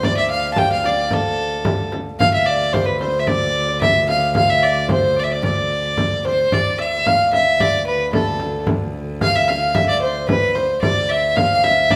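A medieval dance in a straight two-beat metre, this mysterious, driving passage is cut from a longer piece and runs for about 12 seconds. A bowed fiddle carries the melody up front with an earthy, rich tone and light vibrato, while a bright, fingerpicked Celtic harp plays a ringing second line in a similar register alongside it. Underneath, a fretted viola da gamba holds a low drone on D with a soft attack and an airy bow, sounding close and intimate. A frame drum played with soft hands adds a warm, acoustic pulse that carries a small-room character. The four players perform live together in one room, wrapped in a wet, large studio reverb, and the music moves into a new section at 6.5 seconds.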